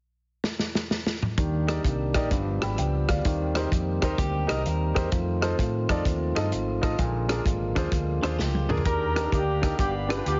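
Jubilant and uplifting, this uptempo gospel excerpt swings at 128 BPM in Eb major, opening with a drum fill from a tight, roomy soul kit at 0.4 seconds before a clear, intimate grand piano, a clean tonewheel organ through a stopped rotary speaker and a dark, round hollow-body bass arrive at 1.4 seconds, with a picked, compressed electric guitar adding a background second line and a mellow, up-front horn section taking the melody at 8.9 seconds, the mix heavily compressed into a radio-like sound with light studio reverb.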